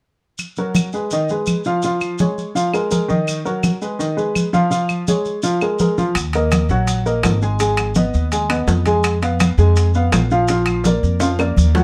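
A slightly detuned, vintage upright piano sits up front in this driving, fiery salsa cut from a longer piece. It enters at 0.6 seconds, carrying the Eb minor harmony at 166 BPM over damped, thick-skinned congas, background claves and grainy, band-limited maracas that begin at 0.4 seconds. At 6.2 seconds a dark, thumpy pizzicato upright bass with gut strings moves to the fore, joined by ringing metal-shelled timbales. A drum fill arrives at 11.2 seconds, all within a moderate studio reverb.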